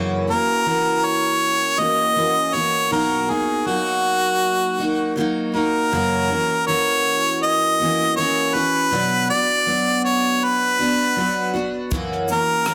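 Easy-going and heartfelt, this acoustic pop excerpt in F# mixolydian moves at 80 BPM with a light 16th-note swing, as a bright, full-bodied, double-tracked picked steel-string acoustic guitar picks out chords from F#7 through Bmaj7 and Bm beneath a clear, close-miked harmonica melody full of light vibrato and scooped notes, set up front with plate reverb and tape echo, before a compact cocktail drum kit with a dry, punchy kick, rim click and shaker slips in at 11.9 seconds, all inside a small wet room and a dense, heavily limited modern master.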